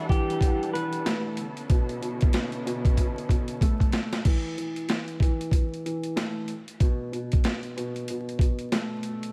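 This excerpt opens with a slightly broken-up electric guitar phrase, dark and fingered with lush chorus and digital delay, that lasts only until 1.2 seconds, alongside a woody, slightly detuned upright piano and a bowed studio string section. It's a moody, reflective boom-bap hip-hop groove at 94 BPM in E minor, swung on the sixteenths, with chords moving from Em11 to Bm11. The piano sits up front with audible action noise and a vintage, intimate character, carrying the accompaniment through to the end at 9.3 seconds. The strings add lush sustained chords with vibrato and portamento until 4.2 seconds, when a drum fill that began at 3.0 seconds leads into a second section built on Esus4 and Asus2/B. The sampler-style kit is compressed and pitched down, pairing a thumpy kick with a high-tuned snare, hi-hat and crash. Vinyl crackle and a dry, close sound give the whole piece a dusty, intimate feel.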